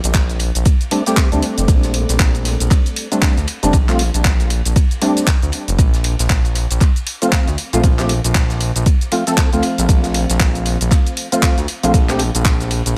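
A deep, overdriven electronic kick sits up front in this sunny deep house excerpt at 117 BPM in Bb major, its swung 4/4 groove filled out by gritty handclaps, hi-hat and shaker, plus a dark, smooth acoustic jazz kit of ride cymbal and snare in the background, its cymbals pumping. A smooth, saturated synth bass with sidechain pumping runs from the start, and a hollow, mellow organ stab with chorus and delay enters at 0.9 seconds, pumping as well. The harmony moves from Bbmaj13 to F/Bb at 5.8 seconds, all set in a digital ambience.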